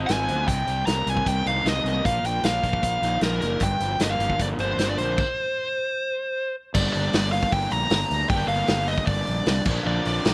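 A distorted, bluesy lead guitar with slapback echo sits up front in this cool, bittersweet indie rock excerpt, riding over a crunchy, double-tracked rhythm guitar riff, a punchy fuzz bass and a raw garage drum kit with a punchy kick and a rolled-off top, before the band breaks for a stop from 5.2 to 6.8 seconds and a buzzy combo organ with spring reverb slips in quietly behind at 9.8 seconds.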